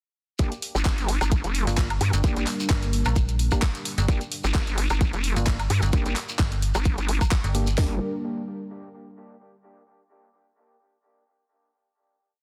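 Aggressive and bouncy, this swung bass house piece opens straight into a drop at 0.4 seconds. Up front are a nasal, wobbling vowel-sweep bass and an overdriven garage drum kit with a tight four-on-the-floor kick and cracking snare, joined by a second kit layer of claps, hats and woodblock, and a metallic FM bass adds chopped phrases from 1.7 seconds. Beneath them, a bright, detuned sweeping pad sustains chords and a hollow, gritty organ stab places sparse echoing chords, both pumping with sidechain, while a grainy shekere plays sixteenths in the background until a final chord rings from 7.8 seconds in a dense, heavily limited mix.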